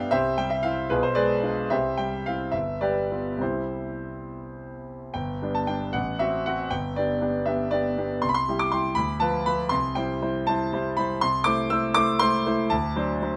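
Lyrical and warm, this romantic character piece for solo piano moves in a rubato 6/8 at roughly 67-81 BPM, counted in dotted quarters, opening in C major before turning toward G major at 5.2 seconds. A clear concert grand, open and up front with a deep bass, spans G1 to E6 across the whole 13.4-second excerpt, its harmony gliding through diminished passing chords and ending on a D7. A moderate small-room reverb lends the piano a close, intimate setting, and the passage is cut from a longer piece.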